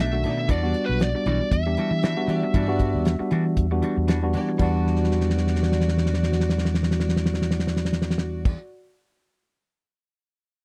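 A dry, close 1970s-style studio sound frames this smoky, soulful excerpt of straight-eighth soul blues in E minor at 117 BPM, opening on an Em9 chord. A dark, overdriven lead guitar sings the melody only until 4.0 seconds, over a clean tine electric piano through a combo amp, a compressed semi-hollow guitar placing stabs through lush chorus in the background, and a round, punchy fingered bass. A clear chamber string section holds bowed chords with light vibrato, while the cloth-damped, thuddy drum kit, with its fat snare and dark cymbals, sits up front and plays a fill from 4.9 to 8.5 seconds.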